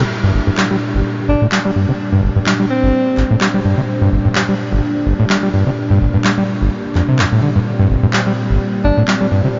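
A dreamy, reverb-soaked mix with a dark, muted top end gives this trippy, driving acid house cut a hazy glow, with a squelchy, gritty acid bass riff sitting up front, distorted and tube-saturated, carrying a resonant filter sweep and a diffuse ambient delay. A smooth, chorused sawtooth pad holds sustained chords beneath a punchy analog drum machine of handclaps, hi-hat and rim click, all riding a light sixteenth-note swing. A breathy, jazz-style alto saxophone with light vibrato and analog delay plays a short solo melody from 1.3 to 3.4 seconds and returns briefly at 8.8 seconds.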